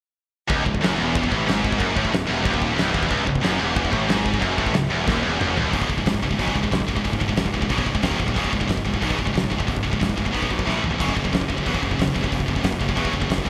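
Relentless and epic, this heavy metal passage charges along at 183 BPM in C# minor, cut from a longer piece. Up front, a bright, heavily distorted high-gain guitar drives the riff, while a double-tracked second guitar thickens it from the background until 5.7 seconds, and a scooped, picked guitar fills out the texture behind them. A growly, fuzz-laden picked bass sits underneath, and a big acoustic drum kit with a punchy kick, fat snare, china and crash cymbals, hi-hat and toms sounds dark and smooth near the front. A drum fill starting at 5.1 seconds leads into a second section at 5.7 seconds, built on power chords moving from C#5 through D#5, back to C#5, then B5 and A5 to F#5, with another brief fill at 10.7 seconds. A moderate, lush hall reverb and bright 1980s-style digital production give the whole a grand, arena-sized sheen.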